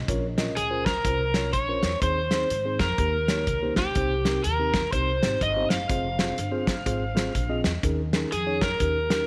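A swung 124 BPM groove in 4/4 drives this uptempo gospel passage, with a soul drum kit's fat snare, tight kick and hi-hat sitting up front beside a woody, pizzicato upright bass. A mellow, clean tine electric piano carries the chords through Bbm, Eb, Cm and Fm toward a closing Eb7sus4. A bright, overdriven slide guitar joins at 0.6 seconds with an up-front lead line that gives the reverent, soulful mood its voice, all in a light, small-room ambience.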